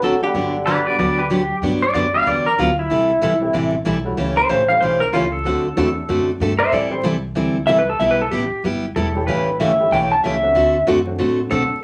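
A brief, dark hollow-body jazz guitar melody and a veiled, cup-muted trombone line open this swinging, down-home country excerpt at 188 BPM in G major, over a bright dreadnought acoustic guitar, a thumpy pizzicato upright bass and a boxy upright piano in the background, before the twangy, compressed pedal steel guitar takes an up-front solo from 1.6 s through C6, A7, D7 and Am7 changes, set in a wet club reverb dusted with vinyl crackle.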